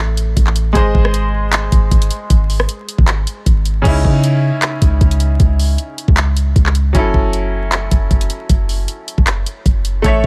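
Dark and hard-hitting, this trap beat moves at 155 BPM in 4/4 with a half-time feel, set in C# harmonic minor and cut from a longer piece. A bright grand piano carries the accompaniment with a brilliant, polished tone and short sustain, sitting a little behind the low end. Underneath, a deep, boomy 808-style bass with a sine core, a noise layer, a fast attack and a decaying tail sits up front with a warm, mellow tone. The electronic trap kit enters at 0.2 seconds with a knocking kick, bright hi-hats, handclaps, rim clicks and crash cymbal, all carrying a tape-warm tint. The harmony moves from A to G# before the second section arrives at 3.9 seconds on C#madd9, then settles on F#m7. The mix is dry, with little reverb, and vinyl crackle runs prominently throughout.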